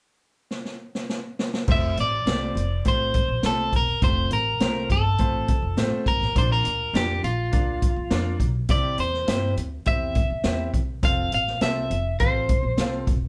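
Uptempo 1960s-style soul with a danceable, uplifting mood, cut from a longer piece and played live by a band in one room with moderate studio reverb. A swinging big-band drum kit opens with a fill at 0.5 seconds, its boomy kick and rolled-off top sitting up front. From 1.7 seconds a picked, compressed electric guitar at the edge of break-up carries the melody, over a bright concert grand piano's brilliant accompaniment and a woody, growly pizzicato upright bass, as the chords move from F through Bb and C back to F.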